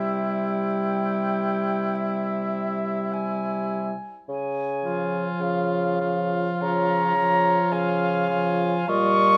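An airy concert flute carries the melody high above the ensemble, its straight tone and gentle onsets sounding slightly distant in this yearning, melancholic slow romantic movement for wind quintet. Beneath it an oboe with a smooth top adds a second line, while a clear, close-miked clarinet and a mellow, up-front French horn supply the accompaniment and a warm, roomy bassoon anchors the bass. Light vibrato colours the oboe, horn and bassoon, all in a classical style. The tempo drifts between 47 and 57 BPM in 4/4 with a rubato feel, and the harmony moves from C to Db at 4.3 seconds. Detailed microphones and a moderate recital hall reverb frame this 9.4-second section cut from a longer piece.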